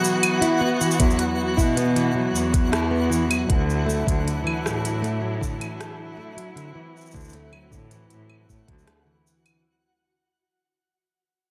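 Lightly reverberant studio ambience frames this intimate, autumnal folktronica fragment, cut from a longer piece and fading out across its full length. A full-bodied jumbo steel-string acoustic guitar, plugged in and fingerpicked, spins arpeggios through a digital delay. Alongside it a veiled, muted string quartet holds soft-attack chords, one bowed player per line with vibrato. Above, a twinkling granular texture adds an FM sparkle with octave-up shimmer and a long release in its own reverb. An organic electronic drum kit, overdriven and re-recorded in a large room, ticks along with crisp hats, claves, rim click and shaker. Between 1.0 and 8.8 seconds, a reedy, gut-string cello carries the bass up front beside a thumpy, muffled, pitched-down electronic kick, while the harmony moves from Esus2 to Dadd9 at 3.5 seconds.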